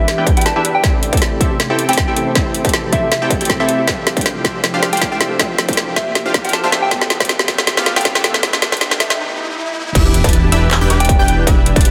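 Future bass in A minor at 158 BPM with a half-time, lightly swung feel, this emotional, lush excerpt builds over an Em7–Am7–Dm11–Fmaj9#11 progression as a round, keys-like synth lead with chorus and delay sings its melody over a breathy pad, a very quiet ringing Celtic harp, a punchy filtered supersaw riff, a fat analog bass and up-front trap drums with woody snare, metallic hats and a distorted kick, while faint risers and a swell lead through a break at 9.2 seconds into a drop at 10.0 seconds, where a detuned unison pluck joins in the background and an impact lands, all washed in a lush hall reverb within a dense, heavily limited master.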